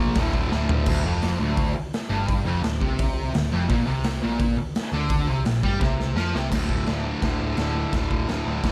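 Gritty and raw, this garage rock fragment, cut from a longer piece, charges along at 170 BPM in D minor with a bright, double-tracked, compressed fuzz guitar riff up front, a dark, round overdriven hollow-body short-scale bass picked underneath, and a saturated acoustic drum kit with a punchy kick, a medium-tuned snare and a rolled-off top that sits up front in a pumping stone room; drum fills arrive at 0.5 and 5.8 seconds as the harmony moves from Dm to Bb5 and back to D5 at 6.5 seconds, all inside a small room ambience.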